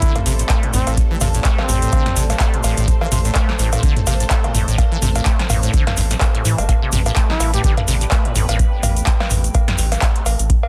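A bucket-muted trumpet leads this hypnotic, raw acid house excerpt in A minor at 126 BPM, playing a veiled, mellow melody with light vibrato and digital delay that returns briefly at 7.3 seconds, over a deep, tape-toned electronic kick and a punchy analog drum machine with metallic hats, handclaps, snare, toms and cowbell, a grainy tube shaker, a squelchy, resonant sawtooth acid riff with lush chorus and dub echo that runs until 8.6 seconds, a round, dark analog bass entering at 0.3 seconds, and a lush vintage string machine and a warbling, nostalgic lo-fi pad in the background that both pump against the kick under a dense, heavily limited master.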